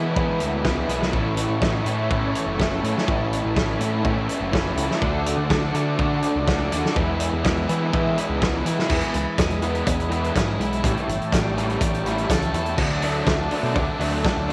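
A small-room recording bathed in moderate echo-chamber reverb carries this upbeat, jangly indie rock excerpt in A major at 124 BPM, where a bright, raw garage guitar riff sits up front over a compressed background guitar riff coloured by ensemble chorus and slapback echo, a growling, round picked bass, a buzzy vintage combo organ holding sustained chords with heavy vibrato, and a loose, gritty drum kit with a fat snare and punchy kick that enters at 0.2 s.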